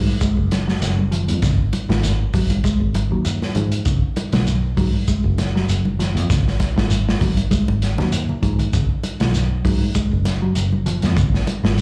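Afrobeat at 98 BPM in 4/4, with a light swing on the sixteenths, this short excerpt cut from a longer piece sits on a single G#7 chord in G# dorian and feels hypnotic and defiant. A fingered electric bass, round and foam-muted, sits up front in the low register, while a dark, clean electric guitar plays arpeggios in the background with a slapback echo. The crunchy breakbeat kit of hi-hat, kick and snare is gritty and saturated, with a tight kick, a medium-tuned snare and a rolled-off top, and it plays a drum fill from 7.5 to 8.7 seconds. Bright, thin-skinned congas played with soft hands sit close and dry but in the background, and a grainy, compressed shekere adds texture, both carrying slapback echo. The whole recording has the feel of a live gig heard through a venue's PA, with light club reverb and small-room ambience.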